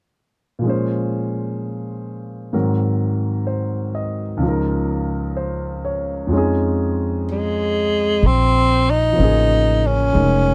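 A breathy tenor saxophone with vibrato and scooped notes enters at 7.3 seconds to carry the melody over a natural-sounding grand piano that has been playing since 0.6 seconds, and a woody, thumpy pizzicato upright bass joins at 8.2 seconds in this smoky, melancholic jazz ballad excerpt in Bb minor at 63 BPM with a swung feel, all captured up close and dry.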